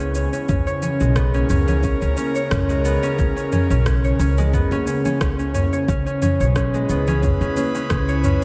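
A mellow, fingerpicked concert harp rings up front in arpeggios from the outset, over an airy, breathy pad of detuned sustained chords treated with chorus and sidechain pumping, a woody, growly pizzicato upright bass that also pumps with the sidechain, and a tape-warmed organic electronic drum kit of cabasa, rim click and toms. This meditative stretch of organic downtempo, cut from a longer piece, moves at 89 BPM in 4/4 with a gentle 16th-note swing, sitting in C# dorian and resting on C#m7 before shifting to E at 5.9 seconds. A soft electronic kick and bright, hard-handed congas join almost immediately, both kept in the background. The harp's tape echo lets its notes trail softly, while the bass gives a thumpy low anchor. At 6.5 seconds a calm, glassy texture of drifting overtones enters faintly on G#4, carrying its own chorus and reverb. Light digital ambience surrounds the whole mix.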